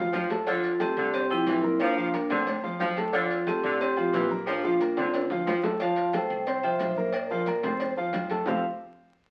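A metallic, hard-mallet vibraphone carries the melody up front from 0.5 s in this festive, sunny salsa excerpt, backed by a clear concert grand piano, a bright saxophone section with light vibrato that stops at 5.6 s, a woody, thumpy pizzicato upright bass, and background congas, low-tuned cowbell and bongos, metal-shell timbales and agogo bells, and very quiet grainy maracas, all heard through moderate studio reverb and the crackle of a very old 78 rpm record.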